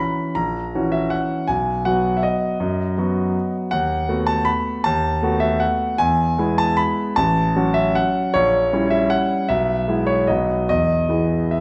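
A clear concert grand piano plays alone through this playful, sparkling classical waltz excerpt in 3/4, its polished, present tone reaching from a deep bass up to the high register with long sustain, and it sits up front in the mix. The tempo moves freely between 138 and 172 BPM with rubato, tuned to A4 = 441 Hz, starting in B major and settling into E major from 3.7 s. A wet recital hall reverb surrounds the playing, and the harmony passes through a diminished seventh chord at 8.3 s before resolving to E at 10.7 s.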